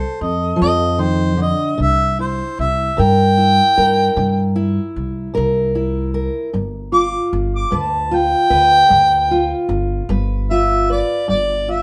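A mellow harmonica leads this laid-back, swaggering snippet of acoustic country blues, playing a jazz-style solo up front with light vibrato, soft attacks and scooped notes in a roomy tone. The groove sits in a slow 12/8 at 50 BPM in dotted quarters, with a straight feel and an easy, unhurried strut. Beneath the harmonica, a fingerpicked steel-string acoustic guitar supplies accompaniment with the woody sound of old strings on an auditorium-size body. A pizzicato upright bass joins at 0.2 s, its gut strings giving a dark, thumpy low end. The harmony moves from F7 to C7 at 1.8 s and on to G7 at 6.5 s, all under a light reverb.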